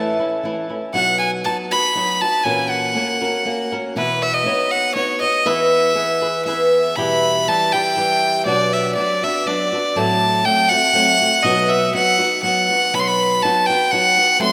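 A single bowed violin carries the melody up front, close and nasal with an earthy edge, a light vibrato and an airy bow sound, spanning B4 to C6. This is proud, festive mariachi-style Mexican folk music in 3/4 at 120 BPM, centered on E major, and it is cut from a longer piece. A fingerpicked acoustic flamenco guitar opens at 0.0 s and sits up front as accompaniment, with the violin entering at 0.9 s. The first part moves through bright major harmony with suspended and added-note colors. At 7.0 s the music turns darker, shifting through E minor and B minor before settling back on B. A lush, wet hall reverb surrounds the rough home-demo mix.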